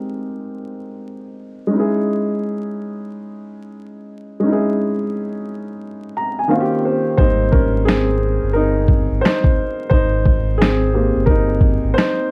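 A dark, woody upright piano opens this cosy, nostalgic lo-fi hip hop passage in Ab major at 88 BPM with a swung 4/4 feel, moving through lush jazz chords under a filter sweep before a fill at 5.8 seconds. At 7.2 seconds the piano takes a solo as a gritty, pitched-down boom bap kit with a thumpy kick, medium-tuned snare and finger snaps enters beside a deep, mellow sine sub bass. Vinyl crackle and a small room reverb give this cut from a longer piece its vintage intimacy.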